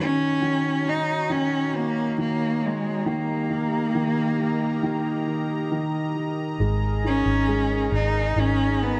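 Pop at a slow 68 BPM in a heartbroken, emotional mood, where a rich, bowed solo cello with vibrato sings the melody up front over warm grand piano accompaniment, both carrying tape echo, while a smooth, detuned sawtooth analog pad with chorus holds slow-attack chords above, the harmony moving from Ebm7 to Eb to Absus2 until a round, punchy, foam-muted electric bass enters at 6.6 s on a low Ab, all set in an echo-heavy mix with a moderate echo chamber reverb and a top end that stops at 10.4 kHz.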